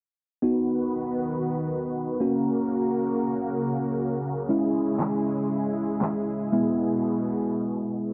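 A bell-like tine electric piano and a filtered supersaw swell open together at 0.4 seconds in this driving, bittersweet dance-pop piece, cut from a longer track. The electric piano plays the accompaniment up front, clean and bright with a phaser, sounding as if heard through built-in speakers while the chords move from B to F# to C# minor to E. Alongside it, the supersaw holds sustained chords: detuned sawtooth voices in unison, a sine sub octave, a soft attack and an evolving filter swell, also treated with phaser. A fat, layered electronic snare with handclaps, tape-warm and up front, comes in at 5.0 seconds and stops at 6.1 seconds. The recording has a dry, close 1970s-style studio sound with light reverb, a low-pass filter and a straight four-beat feel.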